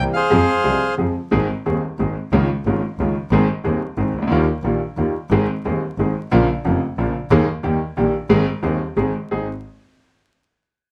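Tango in Ab major at 180 BPM in a rubato 3/4, sultry and passionate, cut from a longer piece: a reedy, dark bandoneon carries the melody up front only from 0.0 to 1.0 s, while a brilliant, vintage-toned grand piano with long sustain and a focused, bowed double bass with vibrato carry on through 9.5 s, moving from Fm through Ab, Dbadd9 and Ebadd9 to Bbm, Ebsus4 and Eb before settling on Ab, all in a moderate club reverb with vinyl crackle.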